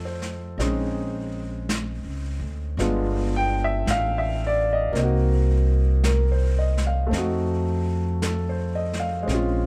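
A slow swung pulse in 4/4 sets the pace of this short jazz ballad fragment, which feels wistful and intimate. Upright bass and upright piano sound from the very start. The bass is plucked on gut strings, thumpy and woody, and sits up front, while the piano is clear and natural, playing accompaniment close to the listener. At 0.2 s a brushed jazz kit joins with brushed snare and hi-hat, heard at a distance in a small, roomy space with a rolled-off top, and mixed well below the other two. The harmony moves through F7, Bbm11, G7b9, Cm7b5 and F7b9, and the whole recording is dry, with little reverb.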